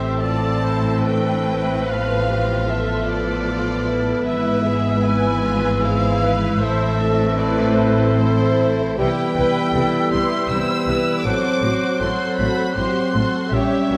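Classical, a slow romantic orchestral movement in A minor at 77 BPM in 3/4, cut from a longer piece and played with rubato and uneven beats, solemn and yearning in mood. A lush, distant violin section carries the vibrato-rich melody, while an airy silver flute, a vintage-toned clarinet and a softer, expressive second violin section add supporting lines, and a mellow bassoon and focused violas fill in the background accompaniment. Dark French horns hold sustained chords over a bass of cellos and distant double basses, all set in a moderate scoring-stage reverb as the harmony moves from Am through E/G# and Cmaj7 to F#dim/A.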